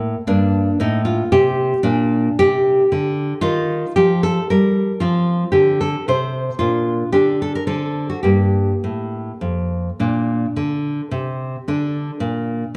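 A dark production set in a recital hall with a moderate reverb tail surrounds this passage, cut from a longer classical piece. A solo nylon-string guitar, placed up front and fingerpicked, plays a grave, introspective baroque-style dance in 3/4 at around 100 to 118 BPM, with a rubato feel that lets the pulse breathe. Its tone is bright yet full-bodied, spanning from F2 up to C5, and finger squeak adds an intimate, human touch. The harmony moves through Gm, Eb, F5 and Bb, settling in G minor from 3.4 s, with a brief moment outside any chord before a D5 chord leads back to Gm. The opening idea returns at 10.0 s, with the guitar carrying on alone until 12.8 s.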